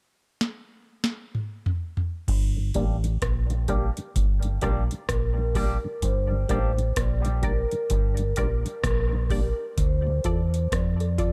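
A booming, overdriven analog drum machine with a deep kick, crisp snare and metallic hats opens this meditative, spacious dub reggae excerpt at 64 BPM in G dorian with a drum fill from 0.4 seconds, before a round, dark fingered bass enters at 2.3 seconds on Gm, followed moments later by a mellow tonewheel organ with slow rotary speaker and dub echo in the background, a muted, detuned sawtooth chord stab with phaser, and a bright, twangy envelope-filtered guitar with tremolo that plays until 6.7 seconds, while a ringing soft-mallet vibraphone carries the melody from 5.1 seconds, and the harmony later moves to Dm at 9.8 seconds, all in a dry, close sound.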